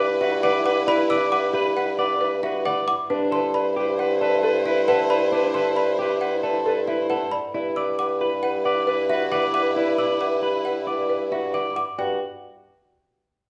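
A straight 5/4 pulse at 135 BPM drives this propulsive, hypnotic minimalist pattern piece in G major, cut from a longer work: a buzzing marimba with medium mallets carries the melody, a bright clarinet holds a second line on B4, and a lush, bowed violin section sustains chords, while a slightly broken-up, twangy electric guitar and a mellow trough xylophone with rubber mallets (entering at 0.2 s) spin arpeggios over a punchy, up-front bassoon anchoring the bass on G2, the ensemble heard from further back in a wet studio reverb as the harmony moves from G6 to Cmaj9#11/G at 3.1 s and back to G6 at 7.5 s.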